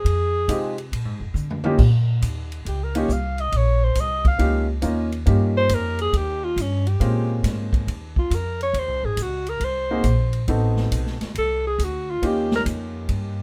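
Small-group swing and bop jazz at 138 BPM in a swung 4/4, playful and sophisticated, with a warm, subtone alto saxophone soloing up front over an Eb mixolydian progression that moves from Fm7 and Bb7 through Bbm7, Ab and Adim7 before settling back on Eb7. Pizzicato upright bass with woody, thumpy gut strings and a natural drum kit with punchy kick, crash, hi-hat, ride, snare and toms drive the groove, with a short drum fill at 1.4 seconds. A clear, intimate grand piano with audible action noise comps from 0.5 seconds, and light reverb touches the whole of this fragment of a longer piece.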